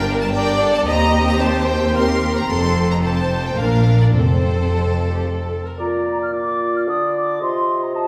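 Quick, cheerful classical-period orchestral music in three, cut from a longer movement, in which clear, intense violins sing the melody over a second violin line, lush close violas, up-front double basses and distant cellos, with round soft-mallet timpani in the background at 4.1 seconds, before the strings give way at 5.8 seconds to a hollow, crisp-edged flute group, a smooth-topped clarinet, a lightly vibrato oboe and a vintage-toned bassoon, all in a reverberant concert hall.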